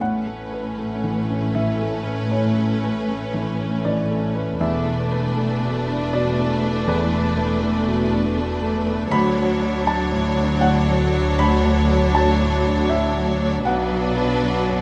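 A felt-muted upright piano sits up front in this hopeful, uplifting excerpt from a cinematic film score, its soft, mellow tone giving the orchestra an intimate center. Set in a rubato 3/4, the piano carries the accompaniment across a broad range from B1 to B5. A focused, vibrato-rich violin section holds the melody while a second violin section adds a clear, intense line that sounds more distant. Beneath them, a smooth viola section and an even, close cello section sit in the background, and a bowed double bass section with a smooth top anchors the low end. The harmony moves from Aadd9 through E7sus4 and Dmaj7 to Bm, all captured with close, detailed microphones and light reverb.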